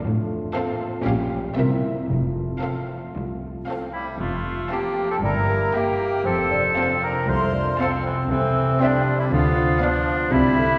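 A bright clarinet stands up front in this playful, whimsical film cue, entering at 3.9 seconds with a classical-style solo second line alongside an airy flute section and a warm cor anglais with light vibrato. Underneath, a thumb-plucked concert harp spins ringing arpeggios in the background from the start, while rich cello and double bass sections carry the bowed bass line. Distant violin sections hold a smooth, even melody and a second line, with a lush viola section adding accompaniment and a roomy, tight French horn section sustaining chords further back. A mellow bassoon joins the accompaniment at 5.2 seconds, deepening the magical feel over a straight 4/4 pulse. The cue is heard from further back in a concert hall with a wet reverb, and it is cut from a longer piece.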